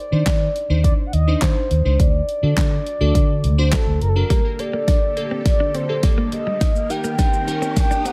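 A lightly reverberant mix opens this confident, driving dance-pop excerpt at 104 BPM in G harmonic minor, where a mellow, horn-like sawtooth synth lead with vibrato and portamento carries the melody over glassy, detuned digital keys with sidechain pumping and a deep house drum kit with a deep kick, fat snare, handclaps, hi-hat and shaker. A dark, round, foam-muted fingered electric bass anchors the opening until 4.2 seconds. At 4.3 seconds the second section builds with a drum fill, bright vintage string-machine violas holding slow-attack chords and a clean, compressed, direct-recorded electric guitar riff, while a background riser climbs in from 5.5 seconds.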